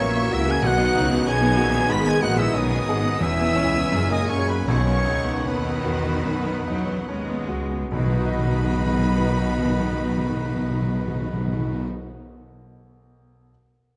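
In a rubato 4/4 that slows through its opening phrase, this passionate, lyrical romantic movement for piano and orchestra sets a polished concert grand melody, with deep bass and sitting in the background, against a close, vibrato-rich violin line, while a solo oboe, a distant silver flute and a second, farther-off violin section carry second lines over a very quiet viola accompaniment, hushed mellow French horn and soft, punchy trombone chords, a bright cello section and a smooth double bass section on the bass, and hard-mallet timpani, set in a moderate scoring-stage reverb as the other instruments drop away by 11.9 seconds and the piano carries on alone to 13.5.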